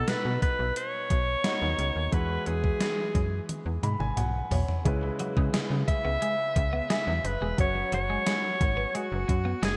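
A straight 4/4 pulse at 88 BPM drives this short, nostalgic and moody slice of 1980s-style pop in C# minor, set by a gated 80s digital drum machine whose thumpy kick, hi-hat, toms and gated-reverb snare sit up front from 0.1 seconds. Beneath it, a slap-like FM bass with a snappy, metallic attack covers a low range from E1 to C#3, while a clear concert grand piano supplies accompaniment with audible action noise, deep bass and long sustain. Up front, a bright alto saxophone carries the melody between F#4 and E5, its forceful, punchy tone marked by vibrato, scooped notes and a smooth top. The drums and piano share a fill from 3.5 to 4.9 seconds, and at 5.0 seconds a twangy, compressed twelve-string electric guitar enters with a picked riff, touched by subtle chorus and digital delay. The harmony moves from B through Eadd9 and C#m7 to F#sus2, all placed in a moderate, lush hall reverb with a bright digital 1980s sheen.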